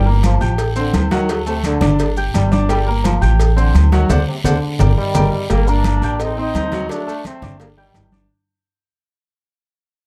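Fiery and danceable, this salsa cut opens with a brilliant concert grand piano comping over a woody, thumpy pizzicato upright bass up front, while a mellow, roomy trombone section plays a second line until about 5.3 seconds. Bright congas and a raspy guiro drive the percussion, with grainy maracas, a round low-tuned cowbell, and ringing agogo bells and timbales sitting in the background. A drum fill and band accent at 4.1 seconds hand over to a punchy, vintage-tinged trombone section carrying the melody with light vibrato as the piece fades out from 5.5 seconds, all in a dark production with moderate studio reverb.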